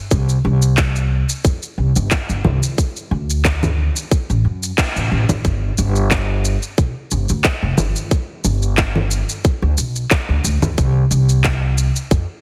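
A woody, dark upright bass underpins this meditative, hypnotic organic downtempo piece at 90 BPM in 4/4, its thumpy pizzicato gut strings pumping from sidechain compression. A tight electronic kick, with an electronic shaker, handclaps and congas sitting lower in the mix, has a tape-warm character from being re-recorded in a large room. The full band hits an accent at 4.8 seconds before a new section begins at 5.4 seconds, all under light reverb and a heavily compressed, radio-like sound in this passage cut from a longer piece.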